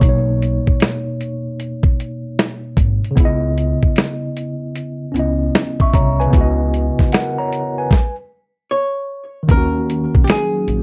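Nostalgic and melancholic, this lo-fi hip hop excerpt sways at an unhurried pace with a swung sixteenth-note feel, cut from a longer piece. A gritty, sampler-style drum kit sits up front with a thumpy kick, medium-tuned snare and hi-hat, while a woody, growly upright bass plucks low beneath it. A worn, slightly out-of-tune tine electric piano carries the chords throughout, moving from Bmaj9 through C#m9 and C#m11 to D#m7. A dark, clean archtop guitar picks the melody from the start until 2.8 seconds and returns at 8.7 seconds, and a stop between 7.9 and 9.5 seconds breaks the groove before the closing section. In the final moments a deep, moody pad with chorus and its own reverb slips in softly in the background, and the whole mix sits in light reverb with the warbling pitch drift of old cassette tape.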